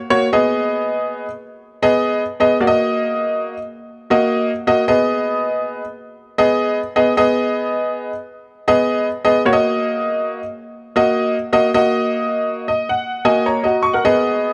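A swung 4/4 soul groove carries this passionate, urgent excerpt, where a lone upright piano, brilliant, woody and slightly detuned with audible action noise, sits intimate and up front in light reverb, moving between G#m and D#m before a fill at 12.3 seconds.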